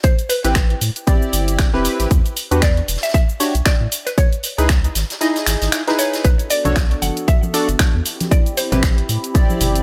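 A woody, mallet-like synth pluck with chorus, crunchy 12-bit grit and delay opens this late-night deep house excerpt at 116 BPM, over a punchy, up-front kick, a tape-tinged house kit of finger snaps, hi-hat and shaker with a 57% swing on the 16ths, and a faint background kit of filtered hi-hat and snare. A hollow, percussive organ stab and a deep, round sine sub bass arrive almost at once, both pumping against the kick as the chords drift through Am9, Em9, C#m9 and Bm7, and the kick briefly drops out before a soft, flute-like pad fades in at 6.2 seconds. Ringing, close-miked congas played with soft hands join at 6.6 seconds in a dry mix with little reverb.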